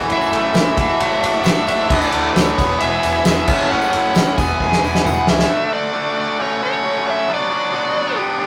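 A carefree, jangly indie rock fragment at 134 BPM opens with a bright, up-front distorted electric guitar riff, a background overdriven electric guitar, a fuzzy picked electric bass and a silky, very quiet analog string pad, while a bluesy overdriven lead guitar carries the melody and a loose, roomy drum kit with a fat snare and dark cymbals plays beside a faint, jingly tambourine, until a drum fill at 4.6 seconds leads into a passage from 5.5 seconds where just the distorted riff guitar and the lead guitar continue, heard in a rough rehearsal-room recording with moderate reverb.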